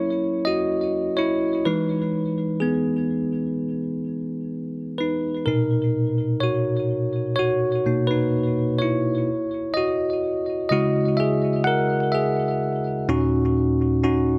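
Tender and emotional, this slow pop excerpt in B major at 63 BPM features a lone tine electric piano, its bell-like, bright tone sitting clean and up front, touched with delay and set in a moderate plate reverb. The piano plays solo across a range from D#2 to F#5, moving through F#7, Emaj7, Bmaj7 and C#madd9 before a new section arrives at 13.1 seconds on D#m7, where the clip is cut off at 14.4 seconds.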